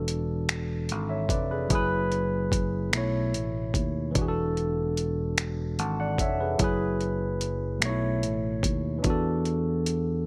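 A barky tine electric piano and a fingered electric bass open this tender, slow six-eight R&B fragment, with a dusty soul sampler-style drum kit joining at 0.1 seconds. The electric piano sits up front with a bright, clean, direct tone and a subtle chorus, carrying the accompaniment through a gently cycling run of suspended ninth chords: E9sus4, F#9sus4 and B9sus4. Beneath it, the bass is growly and punchy, its amped sound anchoring the low end. The drums bring gritty, overdriven character through finger snaps, hi-hat and a thumpy kick, compressed and placed close to the listener. The room is nearly dry, giving the whole passage an intimate, warm closeness as it moves through its single section, a short cut from a longer piece.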